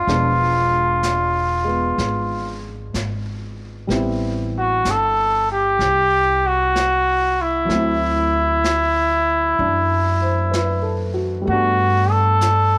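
A mellow, soft-attacked trumpet carries the melody of this tender, late-night jazz ballad with a gentle swing, over a natural-toned baby grand piano moving through chords from E7b9 to Gadd9, woody pizzicato upright bass and a vintage kit played with brushes that sounds roomy with a rolled-off top, all set in light reverb and studio ambience.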